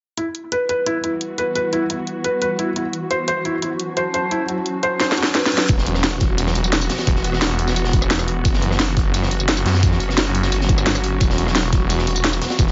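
A muted felt piano plays soft, intimate arpeggios with audible action noise, dub echo and a filter sweep, over an overdriven drum and bass kit with a cracking snare and bright hats, while a swarming, detuned drone sustains chords and a warbly, lo-fi tape-like pad fades in behind them, both pumping to the sidechain. After a drum fill and a faint reverse cymbal, the dark, futuristic piece drops at 5.7 seconds with a very quiet impact. From there a snarling, growling distorted saw bass and a knocking electronic kick push up front, and a gritty, saturated breakbeat kit with a high-tuned snare sits in the background over the drone's sustained chords.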